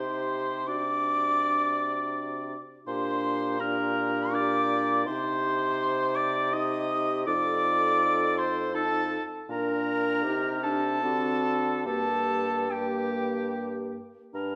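An airy silver concert flute with a straight tone and crisp attack carries the yearning melody over a warm oboe second line, a dark, smooth-topped French horn, a mellow clarinet in the background until 14.0 s and a bassoon bass with light vibrato, in a solemn, slow romantic movement for wind quintet in G minor, in 3/4 at 71-83 BPM with rubato, bathed in wet recital hall reverb as the harmony moves from Cm to settle on Gm.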